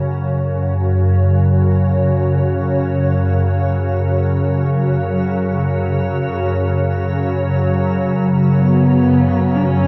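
A detuned, warbling organ-like drone with ensemble chorus and a blurred, evolving granular cloud pad open this desolate, cavernous dark ambient fragment in free time, sustaining F#5 chords under a cathedral-like reverb until a husky, woody bowed horsehead fiddle with vibrato, portamento and delay slips in at 8.6 s.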